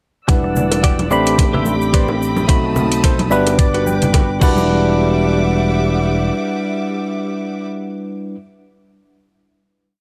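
A thumpy, overdriven four-on-the-floor electronic kick sits up front in this sensual, sleek nu-disco piece in E minor at 109 BPM. Around it play a pop kit with metallic closed hats and crash, ringing bongos, egg shaker and congas, and a dark, round overdriven bass riff. A twangy, clean direct guitar plays funk chords and adds a fill at 3.0 s. A barky, bright tine electric piano pushes held chords through a filter sweep with slapback echo. A rich, smooth string pad pumps beneath them all, and after the drums stop at 4.5 s the piece closes on a final hit in light reverb.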